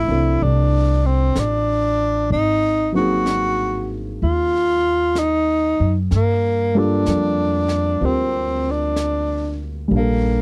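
A breathy tenor saxophone carries the melody from the first moment, over grand piano and upright bass, in this short, intimate and smoky jazz ballad cut from a longer piece. The tempo is a slow 63 BPM in 4/4 with a gentle swing on the eighth notes, set in G minor, and the harmony moves from Fmaj9 to Ab9 at 2.3 seconds and on to Gm9 at 6.1 seconds. Up front, the saxophone sounds whispered and soft-edged, with vibrato, scooped notes and a solo jazz voice. The piano accompanies with a natural, warm tone in which the action noise of the instrument can be heard, while the pizzicato upright bass sits forward with a woody, thumpy steel-string sound. A brushed drum kit joins at 0.4 seconds, staying dark and smooth in the background with brushed snare and hi-hat. The sound is dry and close, like a 1970s studio session with little reverb.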